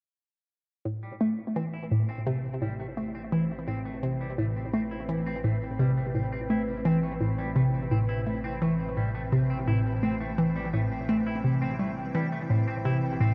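Mysterious and expansive, this sequencer-driven ambient space music, cut from a longer piece, rests on a single Am7 chord from 0.9 seconds in a straight 4/4. Up front, a hollow, bouncy square-wave pluck plays a detuned riff, its filter pluck and moving notch coloured by chorus and tape echo. A clean, twangy electric guitar fades in with bright, picked arpeggios from 1.0 seconds, carrying its own tape echo. Beneath them a deep, round sine sub bass fades in and holds a single low note. From 2.5 seconds an evolving wavetable pad of morphing unison tones fades in with a slow attack, its sustained chords veiled in chorus and built-in reverb, and the dark production is bathed in a huge, wet ambient reverb.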